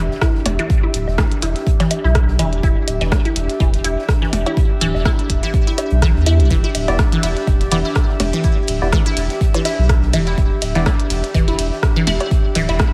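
Lightly reverberant and cool, this sparse minimal techno excerpt in E minor moves at 124 BPM with a swung sixteenth feel, built on a deep, up-front electronic kick and a thick, saturated sine sub bass that pumps against it. A clicky minimal drum kit with hi-hat, ride and rim clicks sits over a very quiet, dark acoustic jazz kit with a high-tuned snare, while overdriven cowbell, percussion blips and woodblock echo diffusely in the background, and a barely audible impact opens the piece at 0.1 seconds. A squelchy, resonant blip pluck riff with phaser, chorus and delay rides over an airy, breathy pad on an Em7 chord, and a hollow, mellow organ stab appears in the background from 6.9 to 10.8 seconds.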